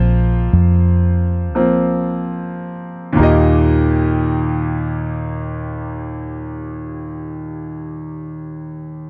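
Pop with an emotional, heartfelt mood, this short passage cut from a longer piece pairs a bright concert grand piano, brilliant and open with a deep low end, against a vintage muted fingered electric bass that sounds dark, round and punchy from its foam-muted, amped tone. Both instruments sit up front in a dry, close 1970s-style studio sound. The pulse slows over the opening 3.2 seconds on a Bbsus2 chord before settling onto Eb, with the bass stopping at 7.0 seconds and the piano ringing on until 9.1 seconds.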